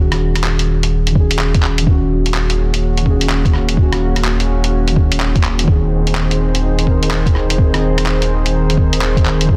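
A swung 4/4 groove at 126 BPM drives this wistful, melancholic future garage excerpt in Eb dorian, with a muffled, pitched-down, sampler-style kit of handclaps, hi-hat and rim click in studio reverb from the start, joined at 1.2 seconds by a compressed, thumpy electronic kick. A round, mellow sine sub bass sits up front on Eb1 and muted, felt-like synth keys with a dark, intimate tone, chorus and tape echo play the accompaniment, both pumping, and from 1.9 seconds a detuned, nostalgic tape-like pad adds warbling sustained chords with chorus, built-in reverb and its own pumping. The harmony moves from Ebm7 to Abadd9/Eb at 5.7 seconds, all within light digital ambience and a dense, heavily limited master.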